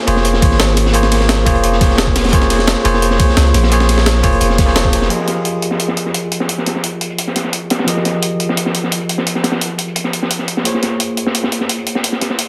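A bell-like, barky tine electric piano opens this dreamy, melancholic liquid drum and bass excerpt at 173 BPM in F minor, its Bbm9 and Fm11 chords coloured by a low-pass filter and tape echo. Two breakbeat kits drive the track: a gritty, sampler-style kit with a high-tuned snare, hi-hat and ride sits up front, beside a dark, saturated acoustic kit with filtered hats and snare. A thumpy electronic kick and a deep, sine-like 808-style bass carry the drop to a band accent at 4.8 seconds, and after the bass stops at 5.1 seconds a filter sweep runs over the piano, with light small-room reverb and a dense, heavily limited master.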